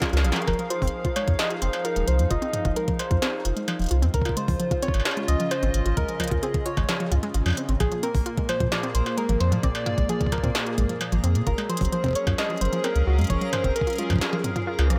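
A short drum fill from a clanging industrial kit opens this glitchy, melancholic IDM cut in F phrygian, moving at 131 BPM in a straight 4/4. Underneath it, a hollow, flute-like pad holds sustained chords and pumps against the beat, and a dusty, warbling pluck spins lo-fi arpeggios through chorus and delay. A gritty, thumpy sampler-style kick joins the kit's crisp hats, rim clicks, toms and struck metal, which sit in a small-room sound, with a round, deep sine sub bass up front. From 0.5 seconds, a gentle, keys-like FM lead adds a decaying melody with chorus and tape echo over chords moving from Fm7 through Dbmaj7 and Bb7 to Gbmaj7. A very quiet reversed, granular texture swells in dreamily at 8.9 seconds, and the kick drops out at 14.2 seconds as the passage is cut off within a digital ambience.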